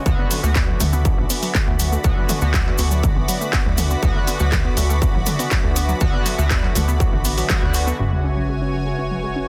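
A dense, heavily limited mix with light digital ambience carries this cinematic, melancholic melodic techno cut, where a distorted, up-front electronic kick and a techno drum kit of handclaps, warm filtered hi-hats and toms drive a punchy, sawtooth-edged sequencer bass, while a grainy cabasa sits in the background. Everything melodic pumps to the sidechain: edgy, nasal stabs from a sync-sweep polysynth with 12-bit grit and delay, a lush unison pad holding bright chords, an ethereal, airy pad, and a warbling, lo-fi pluck tracing arpeggios behind them. After a band accent at 7.5 seconds, a thick, bold unison lead with vibrato and tape echo enters at 8.0 seconds over an F#sus2 chord, joined by an impact, a sub drop and filter sweeps on the pluck, lead and polysynth.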